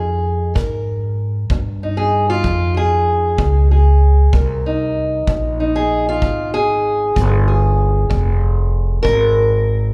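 A moderate recital-hall reverb lends this short excerpt from a longer piece a spacious, churchlike bloom as a brooding, soulful acoustic country blues unfolds in F minor at 64 BPM in a slow 12/8, resting on a single Fm9 chord. Up front, a dark, boxy fingerpicked parlour guitar carries the melody over a woody, thumpy pizzicato upright bass on gut strings. A tight kick drum, played with brushes, enters at 0.6 seconds and sits further back.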